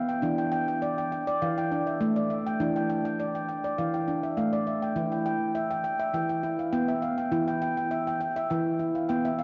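A solo handpan carries this short world-music excerpt, its nitrided steel tone ringing and mid-forward, sitting up front with sharp finger strokes that give each note a bright edge. The mood is hypnotic and meditative, moving at 102 BPM in 4/4 with a light swing on the sixteenths. The handpan covers a range from E3 up to G5, opening on a Dm/E harmony at 0.2 seconds before settling onto E5 at 5.0 seconds. A tape echo trails the handpan's notes, and the whole piece is steeped in a cathedral-scale reverb with a long, wet decay. The production is dark and warm, with the highest frequencies rolled away, so the ringing steel floats in a dim, spacious haze for the 9.4 seconds it lasts.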